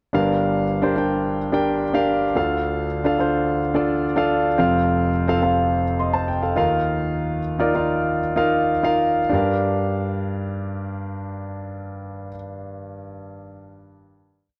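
A solo concert grand piano opens this short, bittersweet and dramatic pop piece, its intimate, up-front tone carrying audible action noise, deep bass and long sustain as syncopated chords and short fills move through a verse that slows from 4.6 seconds before settling on a final chord at 9.3 seconds, all captured in a dry, close 1970s-style studio sound with light reverb.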